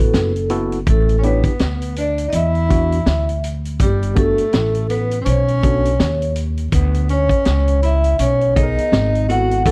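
A relaxed, smooth jazz-hop clip at 82 BPM opens with a ringing vibraphone melody shimmering with a slow motor vibrato, over a worn, slightly out-of-tune tine electric piano through a combo amp and a woody, thumpy pizzicato upright bass on gut strings. A punchy vintage kit with a high-tuned snare and rolled-off top joins almost at once in a swung 4/4, and at 0.9 seconds a breathy, mellow tenor saxophone adds a second line with subtone, light vibrato and scooped notes. The chords move from Asus4 to Gmaj7 and D5 before a G#madd9 at 8.9 seconds, all in a dry, close 1970s-style small-room sound under a layer of vinyl crackle.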